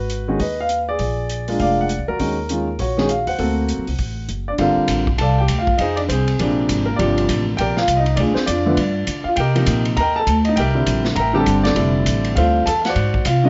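Swinging and cool, this fragment of a longer jazz piano trio moves with a lively swing feel in four. A concert grand carries the melody up front, its tone intimate and natural, with deep bass, long sustain and audible action noise, all set in a plate reverb. A pizzicato upright bass supplies a woody, steel-strung foundation beneath it throughout. A vintage kit of hi-hat, kick, ride and snare sits lower in the mix, heard in a small room with dark cymbals, a medium-tuned snare, a punchy kick and a rolled-off top. The harmony settles into a minor key at 4.6 seconds and moves through rich extended and altered chords, while the recording as a whole carries a light reverb and a softened high end.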